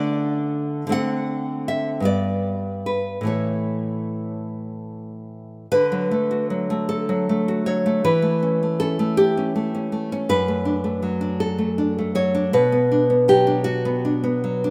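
Romantic solo classical guitar in D major, this short excerpt from a longer piece moves at a slow, rubato 6/8 pulse of roughly 48-57 BPM counted in dotted quarters. The mood is sunny and warm, carried entirely by a fingerpicked nylon-string guitar that sits up front with a bright, acoustic tone across a range from F#2 to F#5. The opening passage, through 5.7 seconds, settles on D before moving through D7, G and A. A second passage then runs from 5.7 to 14.7 seconds through D, A7/E, D/F# and Bm, closing on that minor shade. A lush hall reverb lingers around the guitar, while the overall mix keeps the rough, unpolished character of a home demo.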